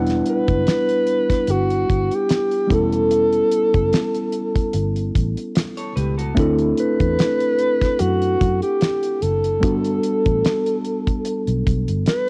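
Cinematic and bittersweet, this lush 1970s-style soul excerpt drifts at 74 BPM with a gentle sixteenth-note swing, as a dark alto saxophone with vibrato and scooped notes sings the melody over a worn, slightly out-of-tune tine electric piano, a round foam-muted fingered bass and a dry, up-front drum kit with a fat snare and tight kick colored by cassette tape, while a bright, twangy guitar through a small old amp slips in a brief riff at 5.8 seconds, all set in studio reverb with a home-cassette character moving through Em9, A7/E, D7 and Gmaj7.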